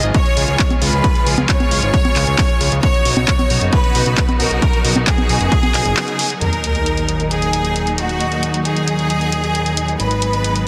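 Opening on a bright, biting studio violin section with dub echo carrying a second line over clear, lush symphonic strings and a fat, saturated analog bass, both pumping with sidechain, this emotional, bittersweet uplifting trance cut at 134 BPM in Eb minor rides a punchy up-front kick that drops out after 5.6 s, plus congas, handclaps and hi-hat from an analog drum machine, before a brief break and band accent at 6.0 s give way to an electronic sub drop at 6.4 s as the chords move from Db through Badd9 to Ebm and Abm7, all in a dense, heavily limited modern master with light digital reverb.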